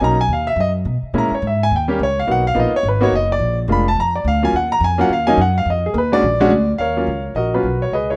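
A rough home-demo mix in a small room, its top end dulled, frames this short cut from a longer jazz piece: a cool, smoky swing tune at a brisk pace. A clear, smooth concert grand with a vintage character carries the melody and takes a solo from 0.0 to 6.8 seconds, its deep low register sitting up front. Beside it, a woody pizzicato upright bass with steel strings holds down the bass line.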